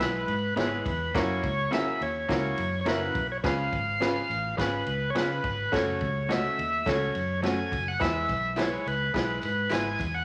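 Joyful and warm, this uptempo 1960s-style soul excerpt moves at 105 BPM in a straight 4/4, with a thick, lightly overdriven tonewheel organ carrying the melody up front through a slow rotary speaker, key click audible, while a brilliant, worn concert grand piano with audible action noise supplies accompaniment. A dark, foam-muted fingered electric bass and an acoustic drum kit with punchy kick, medium-tuned snare and ride cymbal hold the groove, as a slightly broken-up electric guitar adds picked, compressed stabs in the background from 0.6 s. Very quiet tambourine, maracas and group handclaps join at 8.0 s, all set in a moderate large studio reverb with vinyl crackle over a progression moving from E through F#7, C#7 and F#m back to E.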